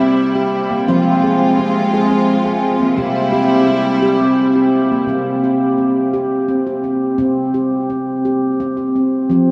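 Meditative and gentle, this short fragment of world-style tuned percussion moves at an unhurried 86 BPM in a straight, lilting 3/4. A stainless-steel handpan carries the piece from start to finish with ringing arpeggios struck by sharp finger strokes, its bright, up-front voice trailed by a diffuse ambient delay. Beneath it, a symphonic string section holds sustained bowed chords with light vibrato, an intense yet distant ensemble sound that ends at 5.0 seconds and leaves the handpan alone until the close at 9.5 seconds. The harmony rests on C, turns to F minor, returns to C, and settles on an open C5 at 5.1 seconds as the music shifts into its second passage. A huge, wet reverb places the music in a vast, echoing space, giving its tones a long, hovering tail.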